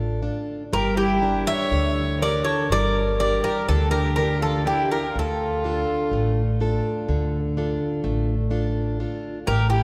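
This melancholic, wistful Greek folk excerpt opens with a picked steel-string acoustic guitar and a pizzicato upright bass sounding together from the very start, the guitar boxy with audible finger squeak and the bass woody and thumpy, both up front. At 0.7 seconds the bouzouki enters with the melody, its mellow, metallic double strings carrying some octave-doubled notes, while a single bowed violin adds a second line played sul tasto, pure and floating at a distance behind it. The music moves in a straight-feeling 9/8 metre and gradually speeds up across the whole clip. The harmony shifts from D minor to G minor and settles back on D minor at 5.1 seconds. A long, wet church reverb surrounds the ensemble, giving the recording the spacious feel of a large hall, and the clip is cut from a longer piece.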